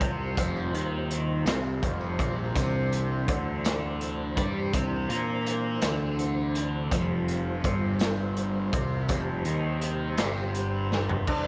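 A gritty, saturated garage drum kit with a punchy kick, a dark, double-tracked fuzz guitar riff with phaser and a round, overdriven fuzz bass open this slow, trippy psychedelic rock excerpt at 55 BPM in 6/8. Beneath them, a buzzing tanpura drone and a soft, flute-like tonewheel organ on slow rotary speaker hold the harmony as it moves from Fsus2 to Cadd9 and back. A jingly, close tambourine enters in the background at 0.4 seconds, the drums play a fill from 10.9 seconds, and at 11.3 seconds a shimmering, plectrum-plucked sitar with slapback echo arrives on D4 just as the cut ends, with small room ambience and light reverb around the mix.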